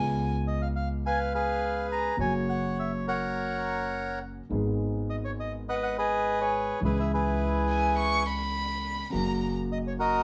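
A rubato 4/4 tango pulse, playful and passionate, drives this short passage, with a reedy, dark bandoneon carrying the melody up front from 0.5 seconds. Beneath it, a vintage-toned concert grand piano with deep bass and audible action noise supplies the accompaniment, while a woody, growly pizzicato upright bass holds the low end, the band playing together in one room with wet studio reverb. A single violin, bowed sul tasto with light vibrato and an airy, intimate tone, sounds briefly at the very start and returns as a second line from 7.7 to 9.5 seconds.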